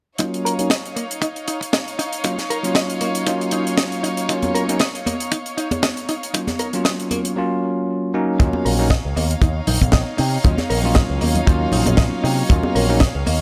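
A dry, tight acoustic kick drum sits up front of this cosmic, sleek nu-disco excerpt in Eb minor, moving at 117 BPM in 4/4 with a light swing on the sixteenths over an Ebm9 chord. From 0.2 seconds a bell-like tine electric piano carries the accompaniment, its clean tone roughened by vintage 12-bit sampler grit and shaped by a low-pass filter, delay and a filter sweep. Alongside it, a bright, compressed clean electric guitar plays a picked riff through lush chorus, delay and its own filter sweeps, while a small chamber violin section holds soft-attack sustained chords, played sul tasto with light vibrato and a smooth top, pumping from sidechain compression. A tight funk kit adds hi-hat and a high-tuned snare, and ringing, hard-hand congas join in the background at 4.4 seconds. At 8.4 seconds a new section begins as a bright, picked electric bass arrives up front, its tone shaped by an envelope filter, all within a light studio reverb.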